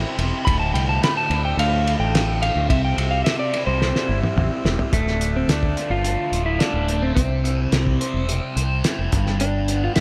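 An electric slide guitar with a slightly broken-up, compressed tone carries the melody, taking a solo through the first 4.9 seconds before a drum fill leads into the next passage of this hypnotic, trippy psychedelic rock piece in D minor at 107 BPM. Beneath it, a bright, double-tracked fuzz guitar repeats a riff through distortion, phaser and dub echo, while a round, dark fingered bass sits up front. A cloth-damped, thuddy drum kit with a fat snare, tight kick and dark, muffled cymbals adds a gritty, lo-fi weight, and the small-room, echo-heavy mix moves from D5 through C, Dm and C to G.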